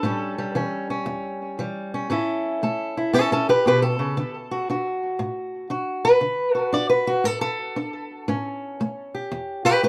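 A fingerpicked old ladder-braced acoustic guitar carries this short acoustic country blues fragment alone, its dark, woody, boxy voice and old strings giving it a gritty, soulful character. The tempo sits at 116 BPM in 4/4 with a swung eighth-note feel, and the music stays in A mixolydian. The guitar ranges from E2 up to D5, moving from A7 to D at 4.2 seconds and back to A7 at 8.3 seconds. An analog delay colours the guitar, which sits up front even as the overall sound is heard from further back in a small booth with a short, wet ambience. Cut from a longer piece, the passage lasts just under 10 seconds.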